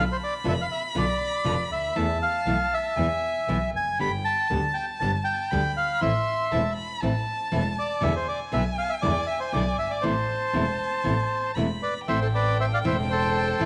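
A small room with a moderate echo-chamber reverb frames this tense, passionate tango fragment, played in 4/4 with a rubato feel. Up front, a reedy, dark bandoneon carries the melody while a bowed violin adds an expressive second line with soft attack, vibrato and portamento. Beneath them sit a bright, fingerpicked nylon-string guitar with audible finger squeak and an earthy, biting bowed double bass, and at 12.1 seconds a distant, woody chamber string section enters with very quiet stabs on an Am chord.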